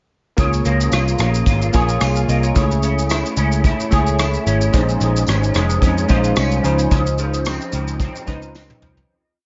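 A dreamy, hazy indie and bedroom pop piece in Db major opens at 0.4 s at 110 BPM with a lightly swung 16th feel: up-front brushed drums tap out a soft rhythm-box pattern, a dark, foam-muted picked bass carries a rounded melodic line, and detuned sawtooth analog keys push drop-2 chords with grace notes and short fills through chorus, cassette-tape colour and plate reverb. A bright, slightly broken-up guitar through a small old amp fingerpicks a twangy lo-fi roll with ensemble chorus, vibrato and plate reverb, while a very quiet, distant, jingly tambourine marks the backbeat. The harmony moves from Db6 through Amaj7/C# and Bbm11 to Dbmaj9, the piece fades out from 6.9 s, and a drum fill closes it at 8.5 s.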